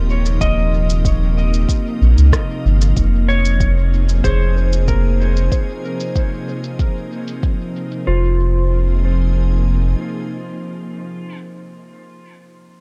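A deep, round sub bass sits up front in this hazy, meditative ambient dub excerpt, its soft triangle-and-square tone holding the low end until 9.9 seconds. Above it, an organ-like pad of detuned sine voices sustains bright, full-bodied chords through ensemble chorus and its own reverb, moving from Eb to Fm7 at 3.0 seconds. A dark, clean lap steel guitar, fingered with a slide, carries the melody through dub echo. Meanwhile a gentle FM bell spins mellow arpeggios in the background, treated with chorus, a low-pass filter and echo, with a filter sweep across the middle stretch. The deep, layered electronic kick and a filtered, echoing shaker and rim click were both re-recorded in a small room, playing in a straight 4/4 feel. Overall the mix carries little reverb but leans heavily on echo.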